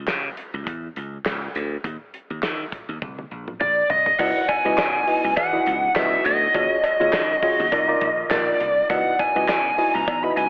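Early-eighties boogie funk in C# dorian at 102 BPM with a 16th-note swing, this late-night excerpt opens on a growly, punchy slap bass and a damped 70s kit with a fat snare, tight kick, hi-hat, toms, crash and handclaps, moving through a drum fill from 3.0 seconds. An overdriven, up-front lead guitar with slapback echo takes the melody at 3.6 seconds, and at 4.2 seconds a worn, slightly out-of-tune tine electric piano with subtle chorus, a very quiet brassy analog pad with detuned sawtooth warble and a background cowbell join over C#m11, D#m11 and Cm11 chords. The whole mix sits in a lush hall reverb with a big arena sound touched by a telephone-like quality.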